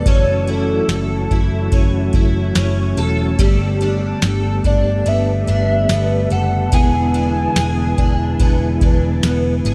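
A dark, lightly reverberant production frames this floating, ethereal dream pop excerpt at 72 BPM in 4/4, moving through F#m7, Gadd9 and E7. At 0.1 s a booming, up-front analog drum machine with a deep kick, tonal snare, ride cymbal and tambourine enters alongside a round, foam-muted vintage electric bass, while a full-bodied picked twelve-string acoustic guitar, present from the start, plays shimmering, octave-doubled arpeggios through ensemble chorus, tape echo and shimmer reverb. A mellow, flute-like tonewheel organ holds sustained chords through chorus vibrato and a slow rotary speaker, and a warbling, nostalgic square-and-sawtooth lead carries the melody with chorus, phaser, tape echo and shimmer reverb until 9.2 s.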